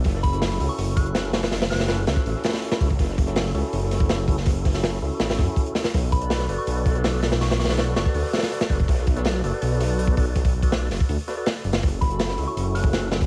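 A crunchy, gritty breakbeat kit with a tight kick and dub echo drives this dark, frenetic drum and bass jungle cut at 163 BPM in F# minor, over a deep, rumbling detuned saw bass, while a tonewheel organ with key click and slow rotary speaker plays stabs throughout, a soft FM synth bell with chorus and phaser drifts in and out in the background, and an airy, breathy pad enters at 11.8 seconds as the chords move from F#m7 to Bm7 and back, set in an echo-heavy mix with vinyl crackle and small room ambience.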